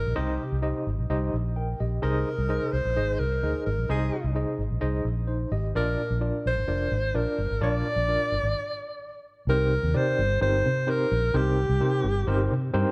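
Uptempo 1960s-style soul with an uplifting, joyful mood, cut from a longer piece, where a warm jazz-style alto saxophone carries the melody with vibrato over a round, punchy foam-muted electric bass and a barky, gritty tine electric piano run through a combo amp with fast tremolo. All three sit up front in a dark production with light reverb, moving from C minor through A-flat and B-flat. A stop from 8.6 to 9.5 seconds sets up a new section on a C minor seventh.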